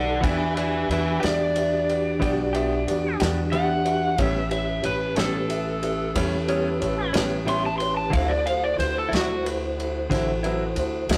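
An overdriven slide guitar opens this slow, swaggering 12/8 blues, sitting up front over a dark, woody upright piano, a soft, flute-like tonewheel organ holding sustained chords through chorus vibrato and a slow rotary speaker, and a pizzicato upright bass with steel strings. At 0.2 seconds a small-room soul drum kit joins with tight kick, medium-tuned snare and dark ride cymbal, along with a clean electric guitar recorded direct, its compressed, scooped tone shimmering with harmonic tremolo. The slide guitar carries a fingered, rollicking solo until 9.5 seconds, while the harmony moves from Em7 to A9 and then D9. The mellow organ and piano fill out the middle, and the drums keep a rolled-off top. Light reverb and a rough rehearsal-room sound give this fragment, cut from a longer piece, a loose, lived-in feel.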